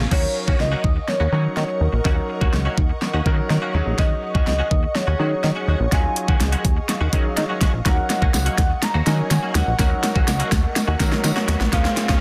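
A dance-pop excerpt with a bittersweet yet driving mood, moving in a straight 4/4 over Ebm7 and Ab7sus4 chords as the whole passage builds up beneath a running drum fill. The layered, up-front pop drum kit carries a knocking kick and a fat, overdriven snare with soft clipping, while a plucky analog bass with a funky, filter-plucked sawtooth tone pumps against the sidechain. A velvety synth lead sings the melody with smooth portamento and chorus, over a twangy, clean electric guitar riff recorded direct and thickened with ensemble chorus. A clear, polished grand piano adds pumping accompaniment, and an ethereal, airy pad holds sustained chords in the background with its own reverb. A jingly tambourine slips in at 8.1 seconds and a very quiet electronic riser appears at 9.9 seconds, all within a dense, heavily limited modern master with light reverb.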